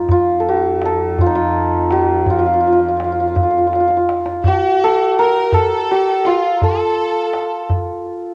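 Over a distant, reedy cello-section drone on F2, a shimmering, hammered santur rings up front, joined almost at once by a tight, soft-handed tombak in this warm, stately Persian modal excerpt in dastgah homayun on F, moving at 55 BPM in 6/8. After a tombak fill from 3.7 seconds, the drone stops at 4.5 seconds as a biting, brightly bowed violin section and a very quiet, airy bansuri with unsteady vibrato add second lines until 7.7 seconds. The santur, cello and violin parts carry a cassette-tape coloring, and moderate studio reverb gives the home recording a modest sense of room.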